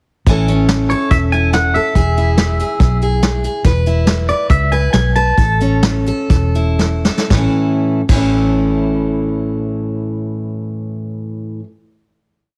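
A twangy electric guitar with tape echo plays a short melody of song-like phrases over this nostalgic, heartfelt honky-tonk and classic country piece, backed by a bright, full-bodied steel-string acoustic guitar played fingerstyle with an alternating, palm-damped thumb. A dark, round, foam-muted electric bass walks up between two-beat root-and-fifth notes, while a vintage brush drum kit with a punchy kick and dark cymbals keeps a country two groove. The band slows down from 3.6 seconds, a drum fill leads into a held final chord at 7.3 seconds, and the whole piece has the heavily compressed, tape-saturated feel of an old radio with light reverb.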